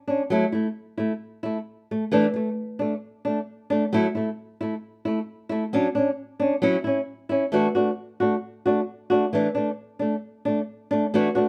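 A straight, danceable 4/4 pulse drives this carefree highlife excerpt, cut from a longer piece and carried entirely by a lone flamenco guitar. The acoustic guitar sits up front with a warm, fingerpicked tone, playing in a middle register from about 0.1 seconds to the end at 11.5 seconds. Its harmony moves between rootless F#m7 and Asus4 chords, then through Dmaj7/F# and C#madd11/F# before settling on D at 7.5 seconds, where a new section begins. The sound is that of a band playing live in one room, with a moderate studio reverb giving the guitar a gentle sense of space. The result feels carefree and danceable, pairing flamenco colour with highlife's easy sway.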